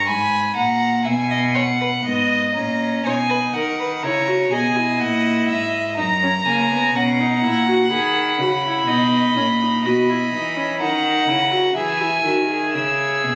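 Serious and solemn, this fragment of a baroque-style fugue for string quartet sets a close, reedy first violin carrying the melody over a second violin with light vibrato and an up-front, gut-strung cello bass, while a warm viola enters at 2.1 s to fill in the accompaniment, all four players in period style and captured on a phone in the room with light studio reverb and compression.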